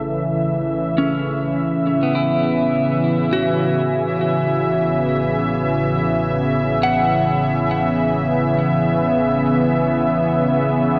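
A warm analog pad sits up front, its detuned sawtooth voices softened by a gentle attack and a shimmer of chorus as it holds sustained chords from C#3 to G#5. This peaceful, weightless ambient passage in A major moves at 52 BPM in a straight 4/4, resting on a single Amaj7 chord throughout its 11 seconds, and it is cut from a longer piece. At 1.0 seconds a clean, picked electric guitar enters with compressed arpeggios, its tone carried by delay. In the background, a clear chamber double bass section bows a focused, close-miked A1 with vibrato. A lush hall reverb surrounds the music, and a worn, warbling cassette-tape character lends the whole a drifting pitch.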